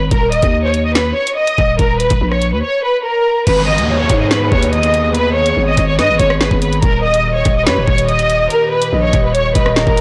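Menacing and dark, this half-time drill excerpt puts a lush, bowed violin section with expressive vibrato up front on the melody, over a growling, buzzy 808-style bass and an overdriven electronic kit with a knocking kick, woody snare and bright hats. A downlifter appears in the background at 3.5 seconds, a soft, flute-like synth lead enters at 3.9 seconds, and from 4.0 seconds an airy, detuned pad with chorus joins it in the backdrop. The whole recording sounds blown-out and overdriven, with light reverb.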